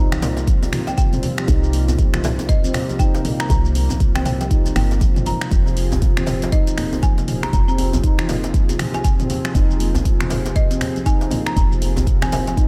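A dry, echo-heavy mix with little reverb opens this hypnotic, driving afro house clip, cut from a longer piece and built on a swung sixteenth-note feel in 4/4. A deep, tape-warm electronic kick sits up front, surrounded by a layered deep house kit of finger snaps, hi-hat, shaker and toms that sounds re-recorded in a small room. Very quiet, compressed congas and a deep djembe with metal rattles add acoustic texture in the background. A round, dark FM bass with a woody, decaying tone and a ringing, meditative stainless-steel handpan playing arpeggios both pump against the kick, the handpan also trailing dub echo. Behind them, a vintage analog pad of detuned sawtooth and triangle tones holds soft, warbling chords through lush chorus, shifting from C7sus4 to Fm7 at 5.5 seconds. From 0.9 seconds, a rustic marimba struck with hard mallets adds a bright, percussive high melody on hardwood bars, its dry attack scattered by dub echo.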